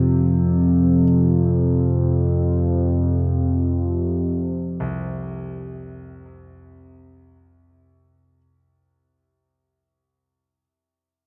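This dark ambient drone piece moves in free time, tuned with A4 at 437 Hz, and carries a desolate, cavernous mood in a short cut from a longer work. An analog synth drone sits up front from the start until 8.5 seconds, built from sawtooth and pulse waves with pulse-width modulation, and it sounds warm, evolving, resonant and mellow, with a slow attack, long sustain, long release and a chorus effect. Beneath it, a clear, natural grand piano plays low arpeggios between C2 and C3, mixed far back and trailed by tape echo, continuing until 10.6 seconds. The harmony rests on an F5 chord, and the 8.4-second section is a fade-out. A huge, wet reverb with a decay of 7.9 seconds and a dark, warm production make the space feel vast and hollow.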